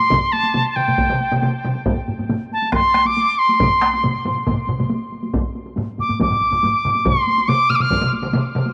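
A piccolo and a taiko drum ensemble begin together at 0.0 seconds in this short ceremonial, powerful excerpt of Japanese traditional taiko music, set in straight 4/4 at 138 BPM and speeding up throughout. The piccolo carries the melody between G5 and F6 with a pure, tongued tone and vibrato, sitting up front while a tape echo trails behind it. Beneath it, three taiko layers drive the piece: one played with heavy sticks and two with hard sticks, all acoustic. The heavy-stick layer and one hard-stick layer are heard in a small room, while the other hard-stick layer has a vintage, band-limited character. A fourth taiko layer, played with heavy sticks in a small room, joins at 1.9 seconds and drops out at 6.9 seconds, thickening the drumming in the middle of the passage. A wet plate reverb with a 3.4-second decay gives the whole a spacious, resonant sheen.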